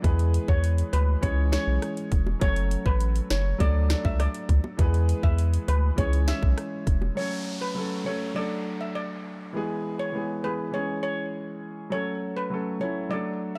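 A straight, bouncy 4/4 dancehall groove at 101 BPM drives this sultry cut from a longer piece, where a tight-kicked, sharp-snared island pop drum kit with metallic hats, a deep, round analog bass and very quiet low-tuned bongos hold the beat until about 7 seconds, a clear, polished grand piano accompanies throughout, a shimmering, bright steel pan carries the lead with tape echo from 0.5 seconds, and an electronic downlifter sweeps through from 7.2 seconds to 11.9 seconds over chords cycling E, C#m, F#m and D in a dark studio ambience.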